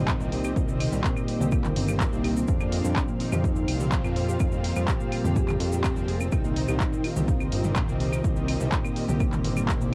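Melodic techno at 125 BPM in C minor, dark and melancholic, cut from a longer piece and moving through Cm7 and Fsus4, with a punchy, tape-warm electronic kick up front alongside an analog drum machine of claves, handclaps, hi-hat and toms, a grainy egg shaker, and a fat, detuned sawtooth bass that pumps to the sidechain. Above it, a brassy, airy analog pad plays stabs through chorus and analog delay, a very quiet unison pluck spins arpeggios, a veiled, con sordino string section holds distant chords, and a cloudy granular pad drifts softly on top. From 1.0 s a thick, mellow unison lead with vibrato carries the melody in the background, the whole mix sitting in light reverb with the hazy character of a home cassette recording.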